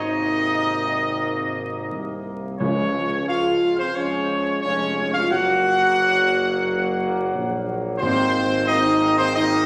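Solemn and regal, this short brass passage, cut from a longer classical piece, moves at a stately 88 BPM in 4/4 in Db major. A bright trumpet section carries the melody up front, its light vibrato ringing over the ensemble. Beneath it, a mellow French horn section with soft attacks and a warm trombone section hold sustained chords. A mellow tuba anchors the bass with a gentle vibrato. Timpani struck with hard mallets on calf heads sound articulate but sit in the background, entering at 2.6 seconds and again at 8.0 seconds as the harmony moves from Abadd9 through Db and Gb back to Abadd9. The whole is bathed in a wet scoring-stage reverb with a vinyl crackle beneath.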